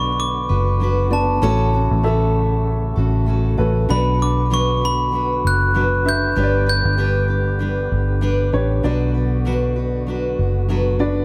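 Pop excerpt in B minor at 97 BPM with a gentle sixteenth-note swing, earnest and bittersweet, where a bright, sparkling glockenspiel struck with brass mallets carries the melody up front until 7.9 seconds over a dark, woody upright piano, a full-bodied fingerpicked steel-string acoustic guitar riff, a round, foam-muted vintage electric bass placed prominently, and a fat, lightly overdriven tonewheel organ with key click, chorus vibrato and slow rotary speaker holding sustained chords in the background, all set in a small room with light reverb.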